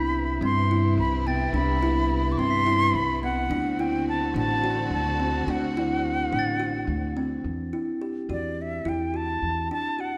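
A jazz flute sings an airy, expressive melody with vibrato up front from the start, over a kalimba's woody, ringing thumb-plucked arpeggios, a pizzicato upright bass and a lush bowed string section, while a glockenspiel struck with hard plastic mallets adds bright, sparkling touches in the background. This pensive, restless contemporary chamber piece in 7/8 moves at 213 BPM in eighths, its harmony passing from Cmaj7 to D7 and then to Esus2 at 7.4 seconds, where the strings fall away. A moderate concert hall reverb surrounds the players in this brief cut from a longer work.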